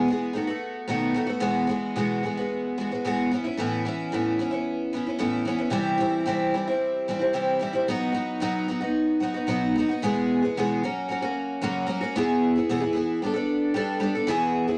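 A shimmering, octave-doubled picked twelve-string acoustic guitar plays alone and up front in this hopeful rock excerpt at 112 BPM in 4/4, moving through chords such as Eadd9, Aadd9, C and B before settling into E lydian at 10.0 s, all within a moderate studio ambience.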